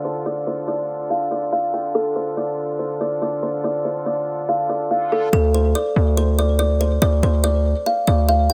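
A half-time trap groove at 142 BPM in 4/4 sets a dark, menacing tone in D minor, tuned to A4 = 438 Hz, in this short cut from a longer hip hop piece. A woody, ringing kalimba carries the melody up front throughout, while a sweet, reedy accordion with light tremolo tuning holds sustained chords under a filter sweep until 5.3 seconds. At that point the harmony moves from Dm to D7(no3), and a heavy, saturated 808-style bass on D2 enters with a fast attack, aggressive and up front, all set in light reverb and a low-pass filter.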